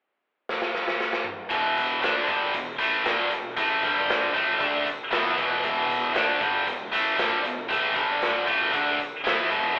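Classic rock at 116 BPM with a swaggering, sunny mood, this excerpt opens with a raw garage drum kit (punchy kick, medium-tuned snare, hi-hat and toms, gritty and saturated in a bright stone room) playing a fill from 0.5 seconds, before a tight, bright, double-tracked distorted guitar riff up front and a dark, round fuzz bass in the background enter at 1.5 seconds over E5 and G5 power chords, all heard live in one room through a telephone-like filter with moderate large studio reverb.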